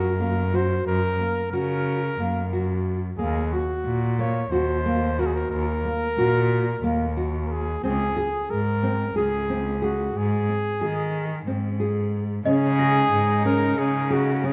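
A close-miked flugelhorn opens this hopeful contemporary chamber piece, carrying a warm, lightly vibrato melody up front in a pop style. Beneath it, a thumb-plucked classical nylon-string guitar plays arpeggios, and a single bowed cello, close and up front, lays down a rich, smooth bass line. The music moves in an uneven 7/8 at 181 BPM counted in eighths, with a straight feel, as the harmony passes through Gb, Ebm, Db5 and Ab. At 12.5 seconds the music opens onto a Dbsus2 chord: a delicate, sweet celesta adds a dry second line in the background, and a muted studio string section sustains dark, veiled chords con sordino. At 12.8 seconds high crotales struck with brass mallets add a bright, shimmering ring. A moderate scoring-stage reverb surrounds the group, and the recording, cut from a longer piece, has a soft top end.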